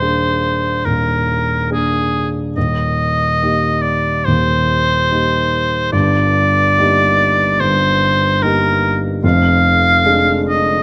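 Classical romantic duo in Eb major at 72 BPM in a rubato 4/4, serene and tender, where a bright oboe with light vibrato and a soft attack sings an up-front melody throughout the 10.8 seconds over a dark, mellow baby grand piano whose long sustain carries the accompaniment through a Bb7/Eb to Eb to Eb/G to Ddim/F progression, all captured by close, detailed microphones in a moderate recital hall reverb, cut from a longer piece.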